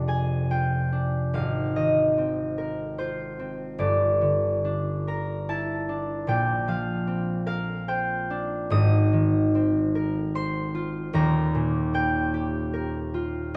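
A solo concert harp opens a gentle, mysterious classical excerpt in 3/4, its fingerpicked strings ringing warm and up front across a span from Eb1 to Eb6, moving with uneven, rubato phrasing through chords such as Fm6, Gm6 and Bb69 before settling on Ebadd9 at 11.2 seconds, all carried by a moderate concert hall reverb.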